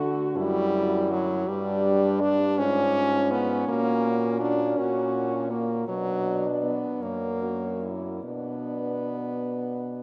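A clear French horn carries the accompaniment up front, while a second horn with light vibrato sings a line beneath a warm, recessed horn melody and a mellow, distant horn anchors the bass. This melancholic, solemn classical passage for horn quartet moves in a rubato lilt in 6/8, drifting through a chord sequence that settles back on B minor. The whole passage is cut from a longer piece and bathed in a cavernous cathedral reverb.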